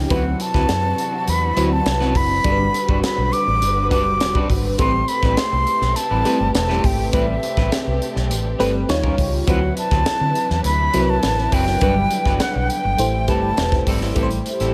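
An airy, expressive concert flute carries the melody up front in this bittersweet, nocturnal slice of polished 1980s jazz-funk pop, moving at 102 BPM in A dorian over chords such as D13, Gmaj7 and Am9. Beneath it, a glassy, bell-like FM electric piano with analog chorus and a twangy guitar at the edge of break-up, bathed in lush chorus, work alongside a dark, round, foam-muted fingered bass and a punchy fusion drum kit with a high-tuned snare and gated reverb. A smooth studio string section sustains chords in the background, and the whole piece has a dry sound as it is cut from a longer piece.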